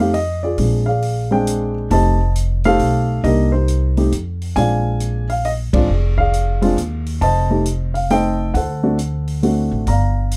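Playful and warm, this swinging jazz piano trio moves at 136 BPM in 3/4, centered on F mixolydian. A dark, mellow baby grand carries the melody up front, its short sustain and audible action noise giving it an intimate, close-up character. The pizzicato upright bass sits equally forward, its gut strings sounding woody and thumpy in the low register. A vintage acoustic drum kit joins at 0.1 seconds on hi-hat, ride cymbal and a punchy kick, sitting further back in a natural studio room. The harmony moves through F7, Bb7, Cm7 and D7, with a brief break in the chords at 4.1 seconds before the band hits a shared accent at 5.7 seconds, and a light reverb keeps this short passage, cut from a longer piece, sounding unforced and natural.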